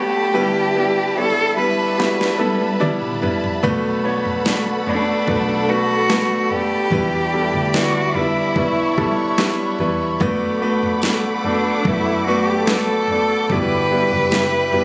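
A dark, boxy solo cello with vibrato and a touch of delay carries the melody of this emotional, longing pop ballad from the start, over clear, polished concert grand piano and a lush bowed string section holding sustained chords. An electronic R&B kit with a knocking kick and deep snare enters at 2.0 seconds with a drum fill, and at 3.6 seconds a reedy, gut-toned violin section adds a second line in the background alongside a round, foam-muted fingered electric bass, soon joined by a very quiet, jingly tambourine. Captured on a phone in a room with club reverb and compression, the recording sounds dulled at the top end.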